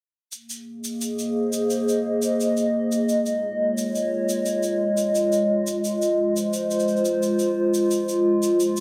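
A wet studio reverb with a short tail surrounds this brief, hopeful folktronica fragment, cut from a longer piece in a straight 4/4. A warbling, lo-fi pad sits up front and carries the harmony in sustained chords from 0.7 seconds, its detuned square and triangle tones thickened by a sub octave, chorus and its own reverb. Slow attacks and long releases give the pad a mellow, nostalgic, vintage character as the chords move from Abadd9 to Dbadd9 and then Fm7. Far behind it, an acoustic shaker begins at 0.3 seconds, sounding distant and roomy, with a brushy texture and a rolled-off top that keep it soft and warm. The whole passage stays within a single section, pairing the tape-like pad with the small, faint pulse of the shaker.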